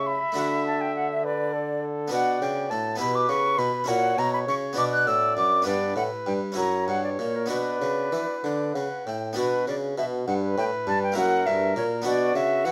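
Trumpet, flute, harpsichord and bassoon begin together in this radiant, flowing baroque-style sonata movement in B minor, set in 6/8 at 67 dotted-quarter beats with light reverb. The dark trumpet carries the melody with light vibrato, while the airy silver flute, the most prominent part, plays a tongued second line above it. The brilliant, plucked harpsichord fills out the continuo, and the mellow bassoon anchors the bass with a smooth top in this passage cut from a longer piece, which turns to a new section at 9.4 seconds and settles back on B minor.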